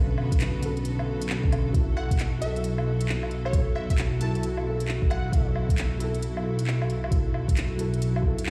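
Vinyl crackle and a large studio reverb sit over this brief cut from a longer piece, which sounds as if it were played on a big sound system in a bare room. It is a wistful, rainy future garage groove at 134 BPM with a swung 16th feel, moving from Bm9 to F#m7/B. A deep, rumbling detuned saw bass sits up front, a mellow felt-muted upright piano with analog delay hangs in the background, and distant, biting symphonic strings with light vibrato hold sustained chords, all three pumping to the sidechain, while a soft overdriven electronic kick and an organic electronic kit of handclaps, smooth hi-hat and woodblock drive the rhythm, and a catchy, punchy unison lead with tape echo carries the melody from 2.0 to 5.5 seconds.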